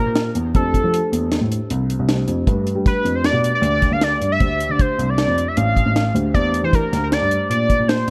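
A straight 5/4 pulse at 155 BPM drives this tense, intricate progressive instrumental excerpt, tuned to A4 = 436 Hz, where a bold, hollow sawtooth-and-triangle lead with an added fifth, chorus and delay carries the melody up front over a mellow tine electric piano in the background, a dark baby grand playing the bass line with audible action noise, and a dry, deep reggae drum kit with a high-tuned snare and tight kick, all moving through Em7b5, Fmaj7, G and Dm7 in a small room.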